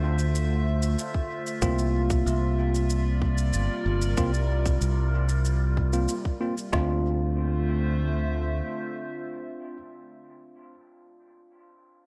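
Light digital ambience wraps this hazy, spacious ambient dub excerpt at 94 BPM in D minor, where a warbling, lo-fi pad with chorus and phaser holds sustained chords from Dm7 to C7sus4 under a bright, growly fingered electric bass set up front. A faint acoustic shaker and a produced electronic kit with a tight kick and woody, overdriven snare carry the groove until about 6.9 seconds. Clean tine electric piano stabs enter at 1.6 seconds through a low-pass filter sweep and dub echo, and continue as the piece settles back onto Dm7.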